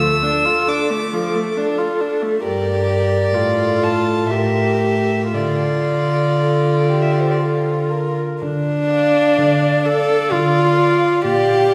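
Classical music for string quartet, this is a slow romantic movement in D minor, elegiac and solemn, moving in 3/4 at 56-70 BPM with a flexible, rubato feel. The first violin carries the melody high above the ensemble, its bowed sul tasto tone pure and floating yet somewhat distant. Beneath it the second violin plays a darker, woody line with vibrato and a close presence. The viola, the most prominent voice in the balance, sits up front with an intimate, airy bow and light vibrato, while the cello anchors the bass with a smooth top and soft attack. All four players are heard throughout this fragment of a longer work, their harmony passing from D minor through G minor and back to D minor by 5.3 seconds, with the opening phrase returning at 8.4 seconds inside a resonant church or concert hall acoustic.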